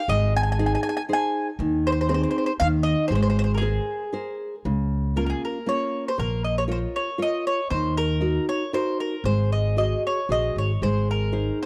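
Lively and sunny, this short Italian folk serenade moves at 117 BPM in a straight 3/4, cut from a longer piece. A picked mandolin with doubled strings carries the melody up front from the start, its tone round and warm. A classical nylon-string guitar, fingerpicked on fresh strings, adds bright accompaniment from 0.1 seconds, while a pizzicato upright bass with steel strings gives a woody, up-front low end. The opening passage rests in Ab major, with a brief unharmonized moment before an Abadd9 chord. At 4.7 seconds the music shifts to Db major, passing through Db6, Bbm and Ebm before an Ab7 leads to Ab. The sound is dry and close, like a 1970s studio recording with little reverb.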